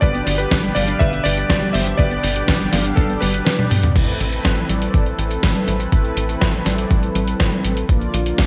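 A bright 1980s-style digital production bathed in a moderate plate reverb opens this short italo disco cut from a longer piece, nostalgic and danceable at 122 BPM in A minor with a straight 4/4 feel. A cutting, clangy electric grand piano carries the melody through a digital delay until 3.8 seconds, while a very quiet, warbling lo-fi pluck plays dark, detuned arpeggios beneath it until 3.9 seconds. Throughout, a smooth, airy analog pad holds sustained chords with chorus, and a round, brassy synth sits in the background with chorus, vibrato and delay on its stabs. Underneath, a tight, punchy sequencer bass with tube saturation drives the low end, joined by a thumpy, gritty electronic kick and an up-front, tape-toned sampler kit of congas, crash, hi-hat, medium-tuned snare and toms, dressed in studio and gated reverb. A drum fill at 3.6 seconds leads into the second section at 4.0 seconds, where the harmony moves from G to Amadd9 before a closing turn to Bb.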